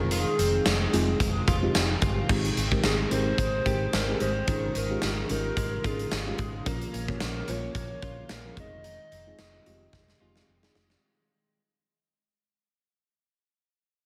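A hollow, woody clarinet-like synth lead with chorus, tape echo and vibrato carries the melody in this nostalgic, romantic 1980s-style pop excerpt, over a lush, dreamy FM electric piano with a soft pad layer, a clean, compressed picked electric guitar riff, a dark, round hollow-body fingered bass and a mid-forward rock kit with a punchy kick and tambourine, all set in a lush hall reverb for a big arena sound, with an electric piano fill at 1.5 seconds, a fade-out from 2.3 seconds and a drum fill at 9.9 seconds.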